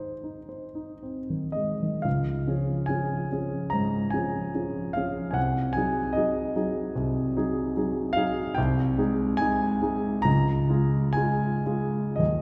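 A long, wet concert-hall reverb, with a decay of about 2.1 seconds, surrounds this short passage cut from a longer piece, and the room is heard from further back even as the piano itself sits up front. It is a romantic classical nocturne for solo concert grand piano in Db major, tender and dreamy in mood, moving at a slow 55 to 76 BPM in 4/4 with a free, rubato feel. The piano's tone is warm, with a deep bass and short sustain, and its range runs from C2 up to Bb5. The opening harmony rests on Ab before settling onto Db at 2.1 seconds, where a new section begins. From there the harmony passes through Ab7 and Ab chords over C before returning home to Db at 10.3 seconds, and the passage ends at 12.4 seconds.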